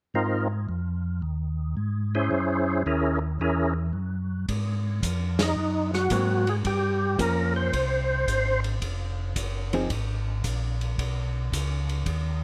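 A percussive tonewheel organ carries the melody up front in this greasy, soulful soul jazz organ trio excerpt, its full, lightly overdriven tone marked by third-harmonic percussion, key click, chorus vibrato and a slow rotary speaker washed in plate reverb. Beneath it, a second tonewheel organ plays a piping, scooped, clean bass line with its own chorus vibrato and slow rotary, running from the opening to 12.4 seconds. The tune swings at 111 BPM in 4/4 in Ab mixolydian, moving through chords such as Ab6, Gb7, Ab9, Gm7b5 and Fm before landing on Badd9. A vintage acoustic drum kit joins at 4.5 seconds as the second section begins, with a punchy kick, medium-tuned snare, dark cymbals and a pumping small-room sound, and the band hits an accent at 5.3 seconds. A dark, clean, compressed hollow-body electric guitar adds fingered accompaniment from 6.1 to 9.9 seconds, and the melody organ drops out at 8.6 seconds, leaving bass organ, drums and guitar.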